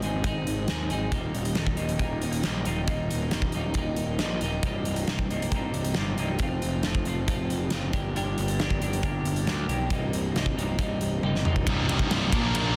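A twangy, phaser-tinged twelve-string electric guitar picks clean arpeggios over a growly overdriven fuzz bass and a big-room rock kit with a fat snare and punchy kick in this cathartic, angsty quiet-loud alternative rock cut in C minor at 137 BPM, moving through Ab, Eb, Cm7, F and Gm until a drum fill at 11.2 seconds hands off at 11.7 seconds to a thick, double-tracked fuzz guitar riff blasting up front in a dense, heavily limited mix with light reverb.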